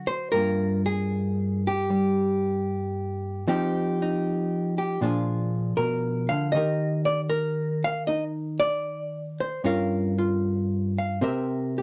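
A loose, rubato swing sways under this brief solo jazz passage, cut from a longer piece, with a playful yet sophisticated air. A single clean electric hollow-body jazz guitar carries everything, its dark, compressed, fingered tone sitting close and up front in a dry 1970s-style studio sound. Across about 11.8 seconds it moves through rich chords from Gm7 through Bb7b9 and Ebmaj7 to a closing C7, tuned a touch below standard pitch.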